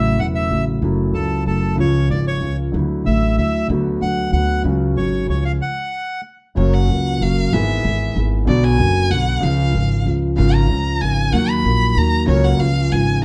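A rubato 3/4 pulse at 189 BPM drives this tense, dramatic tango excerpt, where a reedy, boxy bandoneon carries the melody over an intimate, up-front concert grand piano with deep bass and audible action noise and a woody, thumpy pizzicato upright bass, until a break at 5.6 s gives way at 6.6 s to a distant, expressive bowed violin with vibrato and portamento singing in F# major, all in a moderate studio reverb.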